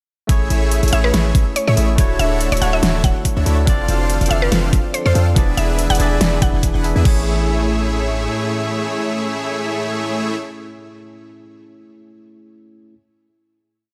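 A half-time 4/4 groove at 142 BPM with swung 16ths drives this bright, playful future bass piece in A major, where an overdriven, knocking electronic kick and a dubstep kit with a huge snare, bright hats and hat rolls sit under a deep, boomy 808-style bass, a dense, detuned supersaw riff with sidechain pumping and delay, a barky tine electric piano holding drop-2 chords with syncopated pushes, and a woody, round mallet-like synth pluck playing short phrases with chorus from 0.9 seconds, while an ethereal, very quiet pad enters at 1.8 seconds and the drop gives way at 7.1 seconds to a final Amaj7 chord in light reverb.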